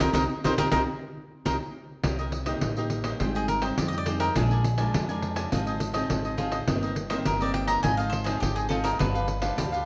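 A band accent opens this lively, yearning samba and choro fragment in C minor at 103 BPM, then from 2.0 seconds a bright, crisp picked cavaquinho takes the melody as a solo over a second cavaquinho's accompaniment, a small, warm fingerpicked nylon-string guitar, a dark, woody pizzicato upright bass on steel strings and a jingly pandeiro up front, all set in a wet, large studio reverb as the chords move from Cm7 through Abmaj7 and Bb7 to a closing G7.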